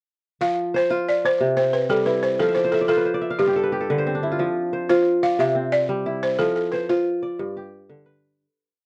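A fingerpicked kora's mellow, ringing ostinato with fast runs and a woody, buzzing balafon played with soft rubber mallets, carrying call-like motifs through a slapback echo, open this hypnotic West African string and xylophone piece in F lydian at 120 BPM in a straight 12/8, with a crisp kora fill at 2.4 seconds and a fade-out from 6.4 seconds, all captured in a dry, close 1970s-style studio sound.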